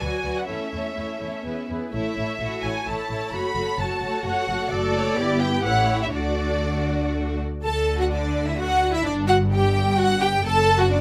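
A close, up-front violin section carries the vibrato-laden melody of this spirited, lively classical-period movement for string orchestra in a rubato 3/4, with a second violin section adding an expressive line, violas supplying smooth accompaniment, distant lush cellos and warmly bowed double basses holding the bass, all in light reverb as the harmony shifts toward D major at 4.7 s in this 11-second excerpt cut from a longer piece.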